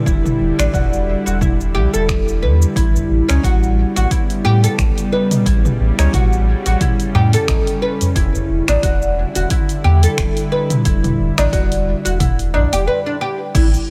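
A woody, fretless oud sits up front, its plectrum-plucked double strings spinning arpeggios through a tape echo in this mystical, hypnotic slice of organic downtempo cut from a longer piece. Beneath it, a string-like drone holds sustained chords with a tense, sawtooth edge, vibrato, built-in reverb and vintage 12-bit sampler grit, breathing with sidechain pumping as the harmony moves from Em7 to A9 at 2.8 seconds and back to Em7. A round, sine-like sub bass anchors the low end and pumps along with the drone, while a punchy, layered electronic kick joins a deep house kit of cabasa, finger snaps, hi-hat, toms and crash cymbal under a gentle sixteenth-note swing. A high-tuned, close and dry tabla enters at 3.0 seconds in the background, and a bronze singing bowl, metallic and slowly beating, lingers barely audible until the break. A brief break arrives at 12.9 seconds, and light reverb lends the whole a soft sense of space.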